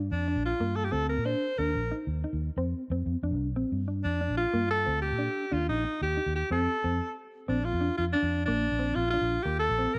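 Highlife guitar band music in a carefree, danceable mood at 122 BPM in 12/8 and Bb major, where a bright, pop-style alto saxophone with vibrato carries the solo melody up front over a round, punchy, foam-muted fingered electric bass and a mellow, clean electric guitar with phaser, with a brief stop at 7.0 seconds before a new section begins at 7.5 seconds, all in a light studio reverb.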